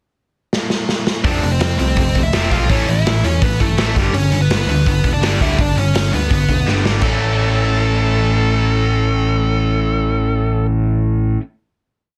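This dry, dense and heavily limited punk rock recording sounds rowdy and rebellious, charging along at 166 BPM in A mixolydian. A gritty, up-front garage drum kit opens with a fill at 0.5 seconds, driving a fast punk groove with a punchy kick, medium-tuned snare, hi-hat and crash, before falling away at 7.1 seconds. At 1.2 seconds a growly, overdriven picked bass enters with driving eighth notes alongside a bright, overdriven rhythm guitar, joined at 1.3 seconds by a second one, both playing palm-muted eighth-note riffs over an F, A and G progression. Above them a bluesy, distorted lead guitar spins out motif-based phrases, partly doubled in octaves. The short piece closes on an A chord from 7.0 seconds, with the bass and rhythm guitars playing on to the end.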